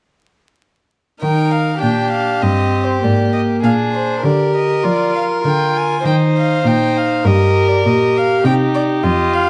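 A close, airy-bowed first violin carries the melody in this graceful, lively classical-period movement for string quartet, its nasal, gut-string voice singing between C5 and Ab5 at a brisk 100 BPM in straight 4/4. A second violin, more distant, shares that reedy period-style colour as it traces a second line from G4 to C5. Beneath them a rich viola with light vibrato fills in the accompaniment, while an up-front cello anchors the bass from F2 to F3. All four players enter together at 1.2 seconds and play through to 9.5 seconds, moving from Eb major through Bb7 and back to Eb before touching C minor at 8.4 seconds. Close, detailed microphones sit within a moderate recital hall reverb, and vinyl crackle gives the sound an aged patina on this passage cut from a longer piece.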